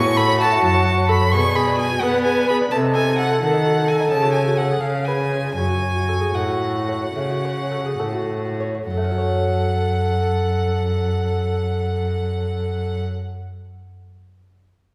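Introspective and flowing, this baroque-style sonata movement in F# minor moves in a rubato 12/8 at 64-87 BPM in dotted quarters, slowing from 3.6 to 8.9 seconds before a second section begins, with a pure, crisp-edged silver concert flute carrying the melody from a distance, a clear, focused solo violin with vibrato singing a second line up front, a delicate fingerpicked lute on double gut strings giving continuo accompaniment, and a rich bowed cello anchoring the bass, all heard from further back in a reverberant recital hall.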